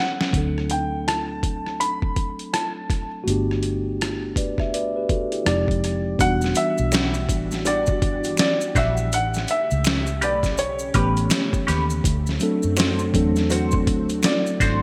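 A short drum fill opens this introspective, smooth neo-soul R&B excerpt, as an intimate baby grand piano melody with audible action noise rides over a mellow tine electric piano, gritty overdriven boom bap drums with a thumpy kick and gated reverb, and a round, foam-muted bass, before maracas and finger snaps arrive near 6.2 seconds, followed by a silky phased string machine in the background and a dark hollow-body jazz guitar with wah and chorus, all within a bright 1980s-style digital production.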